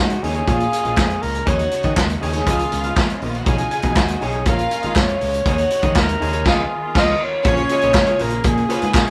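A live band in one room, caught with moderate studio reverb, plays this driving, danceable 120 BPM disco cut in 4/4 over a progression moving from A#m7 through D#7sus4, C#9 and B69. A breathy alto saxophone carries the jazz-style melody with subtone and scooped notes, joined by a lush, focused studio violin section on a second line. Beneath them, a twangy, slightly broken-up guitar, a growly picked bass, a very quiet, biting symphonic string section holding chords and an up-front vintage kit with a punchy kick, dark cymbals and handclaps drive toward a band accent from 6.5 to 7.5 seconds before a new section begins.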